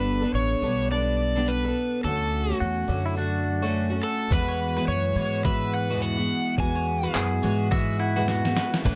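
An up-front, overdriven slide guitar carries the melody in this sunny, carefree acoustic pop excerpt with a gentle swing, over a shimmering, octave-doubled twelve-string acoustic guitar in plate reverb and a growly, woody upright bass, while a bright, twangy pedal steel with volume swells and digital delay joins at 2.6 s, a gritty, sampler-style drum kit with thumpy kick, fat snare, handclaps and crash enters at 4.3 s and plays a fill at 8.3 s, and a double-strung mandolin adds picked arpeggios low in the mix.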